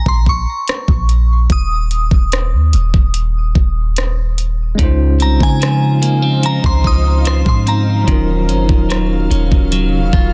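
A dry, dense and heavily limited mix frames this late-night, longing contemporary R&B excerpt, where a deep, boomy 808-style bass and an up-front electronic kit, with its knocking kick, metallic hats, rim click and softly clipped snare, sit beneath a glassy FM synth bell melody touched with chorus and delay that sounds until 9.3 seconds. At 4.8 seconds a tine electric piano heard through its built-in speakers and a picked, compressed clean electric guitar playing arpeggios enter on a Dbmaj9 chord. At 5.8 seconds a cloudy, evolving granular pad adds blurred, detuned sustained chords bathed in its own reverb, and the harmony later moves on to Ebm9 at 8.1 seconds.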